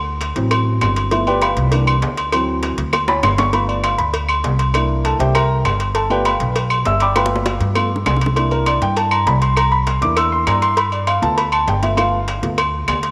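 A growly pizzicato upright bass opens this lively, danceable Afro-Cuban jazz excerpt at 199 BPM in G mixolydian, quickly joined by round, low-tuned cowbell and bongos, ringing metal-shell timbales and agogo bells with a vintage, band-limited tone, compressed, saturated claves in the background, and a dark, mellow grand piano up front that solos over dominant-seventh changes, while drum fills at 2.9 and 7.2 seconds punctuate the groove within a moderate plate reverb.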